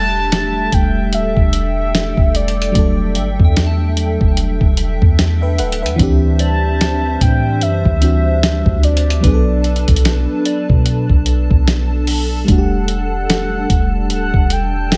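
A moody, longing contemporary R&B excerpt in E minor opens with a round, horn-like synth lead carrying the melody with chorus, delay and vibrato. Beneath it sit a mellow FM electric piano, a hollow, flute-like pad pumping under sidechain and ensemble chorus, a deep sine 808-style bass, and a faint, pure synth bell treated with chorus, phaser and delay. At 0.3 seconds a gritty, tape-warm sampler-style drum kit arrives up front with a thumpy kick, hi-hat and medium-tuned snare, setting a slow 74 BPM groove with a swung sixteenth feel as the dry mix moves from Em11 through D9sus4 and Bm7 back to Em11.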